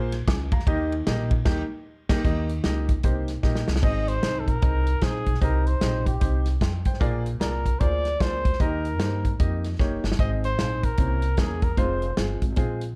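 Hopeful and jubilant, this uptempo gospel cut swings at 151 BPM in Ab major, with a grand piano whose action noise gives it an intimate feel, a woody, thumpy pizzicato upright bass on gut strings and a punchy, up-front acoustic drum kit driving from the start through a band accent and a drum fill, and they carry on as a warm jazz trumpet solo with vibrato and slapback echo enters at 3.8 seconds over a dark, dry production.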